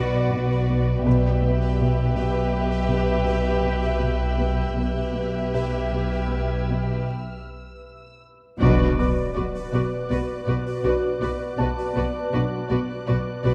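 A dark, warm scoring-stage sound with moderate reverb frames this eerie, ominous suspense cue, cut from a longer film score in B minor at 81 BPM in a straight 5/4, moving between Bm and Em/B. Veiled, con sordino strings carry it: chamber violins play a soft melody and second line, a studio violin section adds a high texture, a distant symphonic cello riff and chamber cello bass sit beneath, and a close, up-front double bass section anchors the low end. A pulsing, detuned gated texture with chorus holds sustained chords while a brilliant baby grand piano with audible action noise glimmers in the background, and at 8.6 seconds, after a break from 7.1 seconds, a band accent brings in a rich viola accompaniment, a roomy French horn section on sustained chords and a huge impact.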